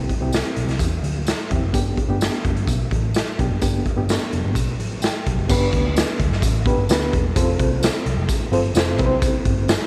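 A reedy, slightly out-of-tune electric piano with a fast tremolo opens this joyful, danceable excerpt of uptempo 1960s-style soul, joined at once by a dark, round, foam-muted picked bass and a raw garage drum kit that sits up front with a boomy kick, gritty saturation and a pumping stone-room sound. A jingly tambourine stays close and dry in the background from 0.3 seconds, while the chords move from C to G and later to F before returning to C at 9.0 seconds. The whole cut carries light reverb and small-room ambience, with a worn, vintage character.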